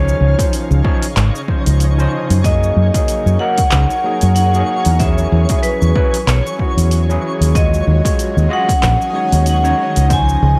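Sunset chillout with a smooth, wistful mood and a swung 4/4 feel, this excerpt moves through lush chords from Dbmaj9 to Ebm11 as a dark, ringing vibraphone played with hard mallets carries the melody over a gritty, barky electric piano treated with digital delay. A foam-muted fingered electric bass sits up front, while an ethereal shimmering pad with chorus and a twinkling granular texture hover in the background. An overdriven deep house kit of handclaps, hi-hat and shaker enters at 0.1 seconds, joined by a punchy electronic kick at 0.4 seconds, both touched with studio reverb.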